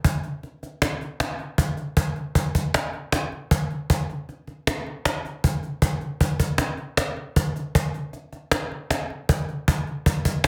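Rock in a straight 5/4 at 156 BPM, this bright, wistful fragment from a longer piece features a lone cajon playing throughout its 10.5 seconds. The cajon sits up front with a snappy, snare-laced acoustic tone struck by soft hands, caught in a live room. The moderate studio ambience frames a dense, heavily limited modern master.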